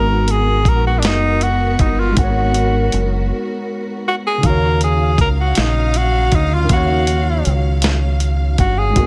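A slow six-eight pulse at 53 BPM, with a straight feel, sets the pace for this yearning, sultry R&B cut in Eb minor, taken from a longer piece. A dusty, sampler-style soul drum kit comes in at 0.3 seconds, gritty and compressed, with a thumpy kick, a medium-tuned snare and hi-hat sitting up front beside a deep, round dub bass played with the fingers, dark and direct in the low register. Over this, a breathy tenor saxophone carries the melody with a soft attack, vibrato and a smooth, whispered top, intimate and up front, with a touch of delay. Beneath it, a worn tine electric piano, slightly out of tune and lightly overdriven through a combo amp with ensemble chorus, plays the accompaniment, while a lush, woody studio string section holds bowed chords. The harmony moves from Abm9 to Ebm9 at 4.4 seconds, just after a brief break from 3.3 seconds, and the whole sound stays dry, with little reverb.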